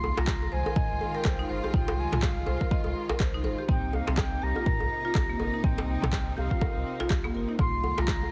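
Afro house with a driving, hypnotic feel and a swung sixteenth-note groove, this short cut from a longer piece moves between Fm7 and Cm7 chords. An up-front, overdriven electronic kick anchors the beat alongside a deep house kit of handclaps, rim click and toms that also carries overdrive, while a tight, cracking djembe adds acoustic snap. A round sine sub bass and a smooth, bowed string section holding sustained chords both pump against the kick, and a woody, bright marimba played with hard mallets spins arpeggios from 0.2 s to 8.0 s through sidechain pumping and digital delay. Above them an airy, distant concert flute carries the melody in a straight tone, its line echoed by digital delay. The mix sits in a small room ambience with a heavily compressed, radio-like sound.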